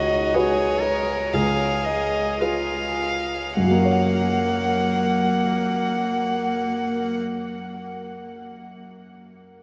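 Serene and lyrical, this slow, rubato classical movement for piano quartet in F# major, cut from a longer piece and slowing down at the outset, sets an intimate violin melody with light vibrato and an airy sul tasto bow up front over a nasal, floating cello second line, a dark, smooth-topped viola entering at 0.3 seconds, and a polished grand piano accompaniment that plays on alone to 9.6 seconds after the strings stop at 7.2 seconds, heard in a vast, echoing space with huge reverb and lossy compression artefacts.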